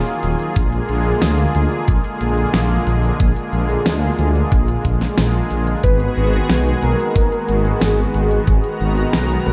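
Dark, warm production sits in a lush hall reverb on this nostalgic, driving synthwave piece cut from a longer track. A brassy, warbling analog pad holds sustained chords with chorus and sidechain pumping over a deep, rumbling detuned saw bass, while a pop drum kit with fat snare and crisp hats and a knocking electronic kick, entering at 0.6 s, share a studio reverb. At 5.8 s a thick unison lead carries the melody through lush chorus and digital delay.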